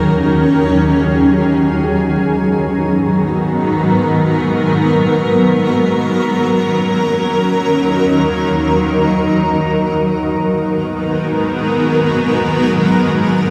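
Hazy and melancholic, this hip hop fragment in G# minor drifts in free time, tuned to A4 = 442 Hz, with a single granular cloud pad playing alone throughout its 13.5 seconds. The bright, up-front pad blends detuned sine and sawtooth tones into a blurred, evolving texture with a slow attack and long release, its built-in reverb and delay trailing across D#m7 and G#m7 chords as a new section begins at 9.8 seconds. A moderate, lush hall reverb with a 2.9-second decay surrounds the sound in a spacious haze.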